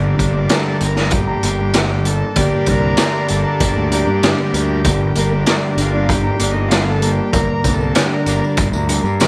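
A reedy vintage combo organ leads this psychedelic rock excerpt in a hypnotic, mysterious mood. Its sustained chords carry a light vibrato and a lush chorus, and the organ takes the solo spotlight before it drops out at 8.7 seconds. Beneath it from the first moment, a mellow electric guitar plays a dark, clean, compressed riff colored by flanger, while a fuzz-soaked fingered bass growls low with overdrive. A raw garage drum kit comes in at 0.2 seconds, sitting up front with a boomy kick, a medium-tuned snare and hi-hat, its sound gritty and saturated with a rolled-off top. A very quiet, jingly tambourine joins at 7.3 seconds. The whole passage rests on a single G minor chord, framed by light reverb and a studio ambience.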